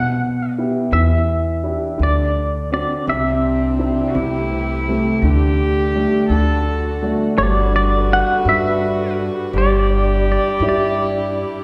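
An unhurried 6/8 pulse at 56 BPM in G major carries this tender, nostalgic acoustic folk-pop ballad fragment, where a clean, up-front semi-hollow electric guitar sings the melody with tremolo over an intimate grand piano accompaniment (boxy, long-sustaining, its action noise audible) and a woody, thumpy pizzicato upright bass on gut strings, and at 3.1 s a floating, sul tasto bowed cello adds a smooth second line and a dark, con sordino string section lays veiled sustained chords in the background, all set in the reverberant space of a church or concert hall.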